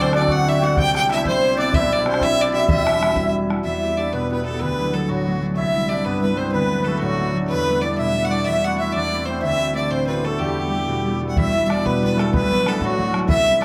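A wild, dark and lively Celtic jig in 6/8 opens with a bright, earthy fiddle carrying the melody through plate reverb, alongside the ringing hammered dulcimer and a reedy, shimmering musette accordion with tape echo on second lines, over up-front fingerpicked concert harp accompaniment and a boomy, open bodhran that plays until 3.6 seconds and returns at 11.4 seconds in this cut from a longer piece.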